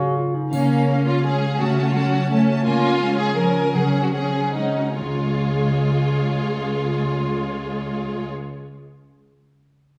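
Lively and spirited, this fast romantic orchestral passage in Db major moves in 3/4 at 129-173 BPM with a rubato feel, slowing down between 2.1 and 5.0 seconds. A dark, distant clarinet is heard only at the very start, while a ringing, fingerpicked concert harp spreads arpeggios throughout. From 0.5 seconds lush bowed strings join: a focused, up-front violin second line sits beneath a soft-attack violin melody set in the background, violas add an expressive accompaniment with portamento, cellos hold a smooth, even bass, and a triangle makes a brief appearance, all heard from further back in a wet recital hall in this passage cut from a longer piece.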